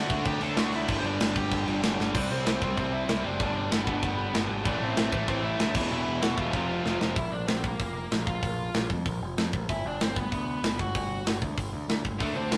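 A rough rehearsal-room recording with warm saturation and moderate reverb frames this rowdy, energetic punk rock excerpt, where a dark, smooth overdriven lead guitar carries the melody throughout over a growling, overdriven picked bass, an up-front metal drum kit with bright cymbals, a medium-tuned snare and a tight kick that fills at 2.0 seconds, and two bright, double-tracked rhythm guitars in the background, one overdriven and one distorted, whose riffs drop out at 7.2 seconds and return at 12.2 seconds.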